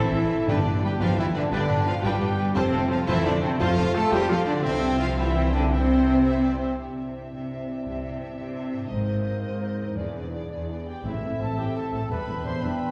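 Cinematic orchestral music in 6/8 at 115 BPM in C major, heroic and adventurous in mood, this short passage is cut from a longer piece. Lush, vibrato-rich violins carry the melody alongside a second violin line, while a pure wooden flute, a quiet bright oboe and a distant clarinet weave supporting lines. Violas fill the accompaniment, mellow French horns and roomy trombones hold sustained chords, a fingerpicked concert harp rings out arpeggios, and a soft-attack trumpet adds stabs; the oboe and trumpet drop out near 6.7 seconds and return around 11.0 seconds. Smooth cellos and expressively bowed double basses anchor the bass, and timpani struck with hard mallets on calf heads mark brief articulate hits at 0.5 and 11.0 seconds. The harmony moves from G through F and C to a colourful Abadd9 and E7 before settling on A minor and Em7, all bathed in a wet concert hall reverb heard from further back in the room.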